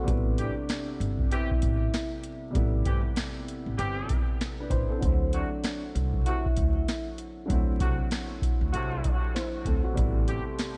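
Gritty and reflective, this swung boom-bap hip-hop excerpt rides on a booming, dry analog drum machine up front, with a deep kick, crisp snare and metallic hats over a woody, thumpy pizzicato upright bass. A dark, slightly detuned upright piano with a cassette-tape tint comps through the Am9 and D9 changes, while soft horn-section stabs and a mellow soft-mallet vibraphone melody, which stops at 7.0 s, both trail diffuse ambient delay. A very quiet, moody analog pad returns near 10.0 s, and vinyl crackle and light studio reverb give the whole a dusty, dulled top.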